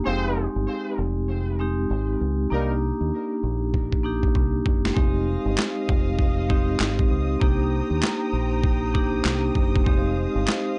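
Swung sixteenths underpin this moody, gritty boom-bap hip-hop excerpt, where a metallic, ringing vibraphone with slow motor vibrato and cassette-tape grain plays over a round, dark fingered electric bass, punchy, distant horn stabs with tape echo sound only until 2.7 s, a compressed, pitched-down sampler kit with thumpy kick, high-tuned snare and handclaps arrives at 3.7 s with a fill, and soft-attack sul tasto strings hold intimate chords from 5.0 s, all in a dry, dark production.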